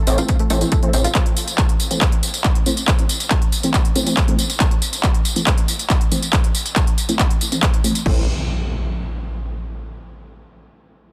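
A dense, heavily limited and dry mix carries this hypnotic, relentless stretch of driving peak-time techno, where a punchy, tape-tinged electronic kick and a layered drum kit of smooth hats, handclaps, tambourine and crash sit up front through to 8.1 seconds, the kit pumping with sidechain. A thick, aggressive detuned rave stab rides a long filter sweep with chorus, reverb and dub echo, while a gritty, nasal distorted synth bass and a round, chorused analog pluck in the background sound briefly at the start before returning together at 8.1 seconds. There, an electronic impact hits as the drums drop away.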